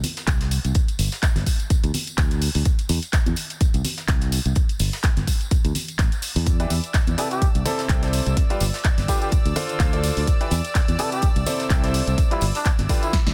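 A dense, heavily limited modern master carries this feel-good, joyful piano house excerpt, where a punchy, up-front electronic kick and a bright, direct fingered electric bass with sidechain pumping arrive at 0.3 seconds over a layered house kit of handclaps, bright hats and snare, a very quiet brushed acoustic kit, and congas and tambourine played with soft hands in the background. At 6.5 seconds a chamber violin section enters with sustained, reedy gut-string chords in a period style, soon joined by a clear, natural grand piano riff with pumping and dub echo. At 7.2 seconds a cup-muted trumpet adds a breathy, raspy, jazz-style solo melody with its own dub echo before a closing drum fill.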